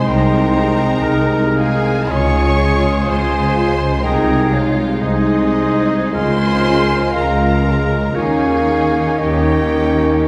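A rubato 4/4 pulse drifting between 52 and 65 BPM carries this tender classical passage in Ab major, cut from a longer piece, where a lush, vibrato-rich violin section sings the melody high above a distant second violin line, clear oboe, pure silver flute and very quiet clarinet, while mellow bassoon and a very quiet viola section accompany, a dark, very quiet French horn section holds sustained chords, and the cello section with an up-front double bass section supplies the bass from 0.1 s, all heard from further back in a wet concert hall through chords moving from Ab/C to Db and on to a closing Eb7.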